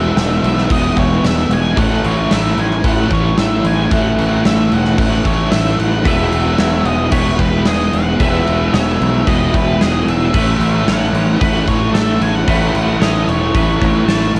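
This dreamy, wistful excerpt of rock, shoegaze and dream pop was recorded at home on cassette in a small room, moving at 112 BPM in straight 4/4 between E and A6, tuned to A4 = 441 Hz. A fuzzy octave lead guitar sings the melody through tape echo over a thick bed of riffing guitars: a biting double-tracked part, a dark, very quiet semi-hollow part and a warm background part treated with reverse reverb, while a growling, overdriven fingered bass holds the low end. A huge, up-front arena drum kit with a pumping hall sound, punchy kick and bright cymbals drives from 0.2 s, and a twangy, compressed clean guitar joins with chorus-washed arpeggios at 6.1 s.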